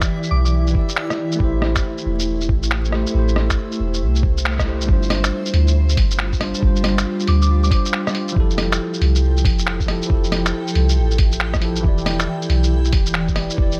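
Nocturnal and ghostly, this excerpt of future garage moves with a swung shuffle over a drifting progression from Em7 through Am7, G7sus4 and Fmaj9 before settling back on Em7. A bell-like, clean tine electric piano carries the accompaniment through tape echo, while a cloudy, evolving granular pad holds blurred sustained chords in the background, both breathing with sidechain pumping. Underneath, a deep, round 808-style bass sits up front, and a muffled, thumpy kick pairs with a pitched-down, sampler-style kit of finger snaps, hi-hat, rim click and shaker, all set in studio ambience. A reversed, dreamy swelling texture glows faintly until 4.9 s, just after a band accent at 4.5 s, and a pure, warbling FM synth bell with chorus, phaser and tape echo chimes briefly near the start and again around 7.3 s. A bed of vinyl crackle runs throughout, lending the whole piece a dusty, lo-fi haze.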